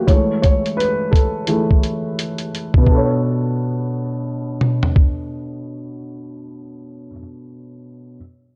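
Lo-fi hip hop at 86 BPM in B dorian with swung sixteenths, this nostalgic, reflective fragment of a longer piece sets a soft, felt-muted upright piano up front, its audible action noise intact and a filter sweep shaping its low-passed tone over the first 2.9 seconds, above a compressed, pitched-down sampler-style kit of muffled hi-hat, toms and thumpy kick that enters at 0.1 seconds and stops at 5.2 seconds, as the harmony moves from Eadd11 to Bm9 in a dry, gritty recording with digital ambience.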